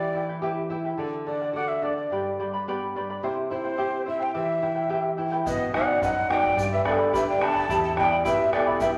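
A breathy, hollow cane quena carries a melancholic, wistful melody up front in this Andean folk excerpt in E minor at 107 BPM in 2/4, over the shimmering double strings of a fingerpicked charango and a dark nylon-string guitar with audible finger squeak, all in a large, wet studio reverb. At 5.5 s a larger wooden quena with a crisp, chiffy attack adds a second line, joined by a deep, distant bombo and a grainy, bright tube shaker. The chords move from Em through D, G and C, then shift to B, G and back to Em.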